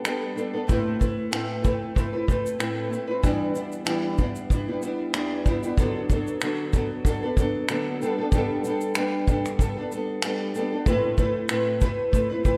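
A lightly swung 94 BPM groove of brushes, finger snaps, a tight kick and shaker from a vintage, roomy brush kit with a rolled-off top joins at 0.1 seconds alongside an up-front, fingerpicked, double-tracked nylon-string guitar of small, warm tone, moving through Gadd9, Amadd9, Em7 and D6 in G major in this sunny, carefree acoustic pop excerpt soaked in a dreamy, lush hall reverb.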